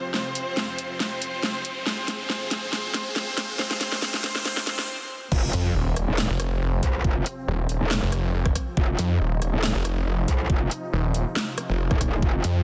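A half-time 4/4 groove with lightly swung sixteenths drives this heavy, aggressive wobble dubstep excerpt, which opens on a build-up where a rich, close chamber violin section carries the melody through a low-pass filter and delay over lush supersaw chords pumping in the background, a background riser and a drum fill from the dubstep kit, with its huge snare and metallic hats. After a brief stop at 4.9 seconds, the drop lands at 5.3 seconds with an impact, an overdriven, knocking electronic kick, and an up-front metallic FM wobble bass with distortion and chorus, joined a moment later by a snarling, detuned, up-front saw bass with a growling, saturated edge, all under light reverb in a dense, heavily limited master.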